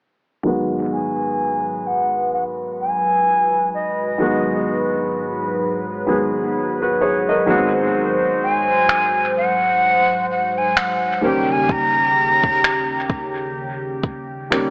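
A felt-muted upright piano with audible action noise and a shimmering, chorused pulse-width pad open this sensual, longing contemporary R&B excerpt at 64 BPM in G# minor, with a gentle swing and a filter sweep running throughout. A breathy jazz flute with a straight tone and lifted highs carries the melody from 0.9 s over chords moving from G#m7 to G#7 and D#7. A smooth, tape-warm electronic kit of finger snaps and a soft kick joins at 8.9 s, and dub echo on the piano, flute and drums gives the echo-heavy mix a hazy AM-radio character.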